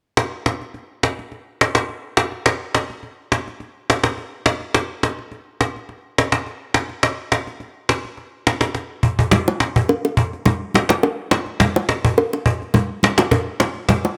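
Afrobeats with a sultry, hypnotic 4/4 swing, led by an up-front cajon that is woody and saturated with faint snares, which plays a fill at 8.7 seconds before warm congas and bongos join at 9.3 seconds in a small room with light reverb.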